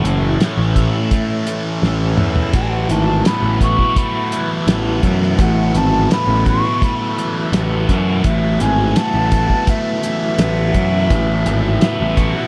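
A straight 84 BPM groove in 4/4 is anchored by a cloth-damped, thuddy drum kit with a fat snare, tight kick and dark cymbals, breaking into a fill at 1.8 seconds, while an up-front, overdriven fuzz bass sits round and punchy beneath a thick, double-tracked fuzz guitar riff colored by phaser and analog delay. Over this trippy, hazy psychedelic rock excerpt, a distant, airy silver concert flute carries the melody with a crisp, chiffy attack and delay, and a tonewheel organ holds smooth sustained chords through a slow rotary speaker in the background. The harmony moves from A to Bsus4 at 2.5 seconds, all bathed in an echo-heavy mix with light studio reverb.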